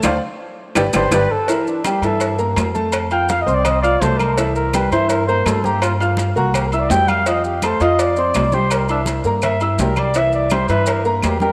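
A straight 4/4 groove at 166 BPM drives this sunny, sophisticated slice of Afro-Cuban jazz in C mixolydian, cut from a longer piece. It opens with a drum fill and a band accent in the first 1.5 seconds. Ringing, vintage timbales and agogo bells sit over tight, high-tuned bongos and cowbell and damped, thick-skinned congas. Woody claves sound in the background and grainy maracas stay close. A boxy upright piano comps up front, and a dark, pizzicato upright bass with steel strings anchors the harmony through moves such as Gm13, F, C7 and F69. From 1.0 s a breathy flugelhorn takes a mellow, jazz-style solo with vibrato and scooped notes, and a moderate plate reverb gives the ensemble a glowing sheen.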